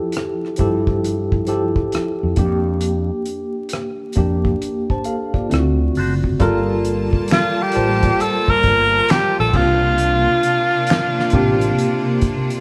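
Soaked in stone-room reverb and vinyl crackle, this excerpt of sensual neo-soul R&B sways on a swung sixteenth feel, with an up-front tine electric piano and a cloth-damped, thuddy drum kit of fat snare, finger snaps, rim clicks and dark cymbals alongside an amped fretless bass, while a twangy wah guitar flickers briefly at 5.5 seconds, a bright bowed string section enters at 6.4 seconds, and a breathy, whispered tenor saxophone takes the melody from 7.3 seconds with scooped notes and vibrato.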